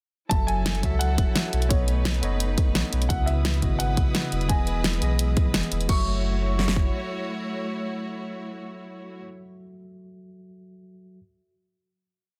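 Punchy, layered electronic drums with a fat snare, two-step kick, closed hats and crash drive this lush, rolling liquid drum and bass piece at 172 BPM in F# dorian, as a deep, round sine sub bass with tube saturation carries a dub-style line beneath a worn baby grand piano motif with 12-bit sampler grit and digital delay, mellow tine electric piano chords with syncopated pushes, and a smooth, vibrato-rich string pad with sidechain pumping, before the drums and bass stop by 6.9 seconds and the keys and strings ring out over a final F#m7 chord.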